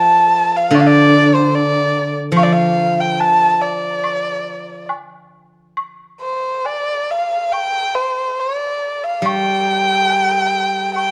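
The rhythm floats freely in a rubato 4/4, giving this short excerpt from a longer piece a wistful, tender, unhurried feel in the manner of a traditional Chinese chamber ensemble. A single bowed erhu carries the melody up front, its voice intimate and slightly boxy, with a soft attack, light vibrato, sliding portamento and an airy bow sound. Beneath it, a steel-string zither played with fingerpicks holds down a low accompaniment, its acoustic tone ringing and silvery. A close, bright woodblock enters at 0.7 s, sitting quietly behind the other two. The music moves into a second section at 5.8 s. A moderate recital hall reverb and a dark, warm production wrap the trio in a soft, rounded space.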